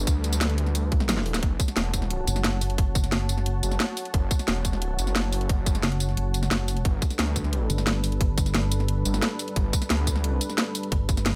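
A straight four-four drum and bass pulse drives this dark, aggressive, futuristic cut from a longer piece: an overdriven, tight electronic kick and a layered kit of cracking snare, bright hi-hats, tambourine and toms sit up front, and the kick drops out for a short drum fill at 1.1 seconds. Beneath them, a thick, detuned sawtooth bass with chorus and overdrive rides under a deep, moody analog pad pumping with sidechain, while a heavy, saturated pulsing pluck wobble bass enters at 2.3 seconds and returns at 5.8 seconds to carry through to the end.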